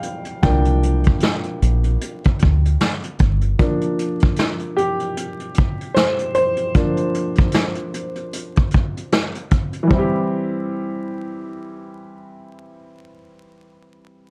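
Lo-fi hip hop in C mixolydian at 76 BPM, this dreamy, mellow excerpt cut from a longer piece moves with a gentle 16th-note swing under light reverb, dark production and vinyl crackle. An upright piano, woody and polished with a cassette tape colour, carries the harmony from E3 to G5 and takes a solo from the start until 9.9 seconds, resting on a C9sus4 chord before settling onto plain C. A vintage brush drum kit with a punchy kick, medium-tuned snare and hi-hat sits up front with a small-room, rolled-off top, playing until 10.1 seconds. A deep dub fingered electric bass, round and foam-muted, appears only briefly between 0.4 and 3.5 seconds, moving between G1 and D2. The piano continues on its own after the drums stop.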